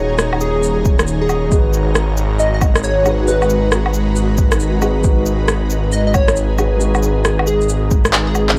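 A menacing, saturated detuned saw bass with sidechain pumping, an ethereal pad with chorus and sampler grit, and a soft, felt-muted upright piano in the background open this nocturnal, melancholic future garage excerpt with its swung 16ths. They are joined by an up-front overdriven kit of rim click, shaker, woodblock, cabasa and handclaps, a punchy, catchy square-wave lead with tape echo entering at 0.4 seconds, and an overdriven deep electronic kick, all moving between D#m7 and G#m7 before a drum fill at 8.1 seconds.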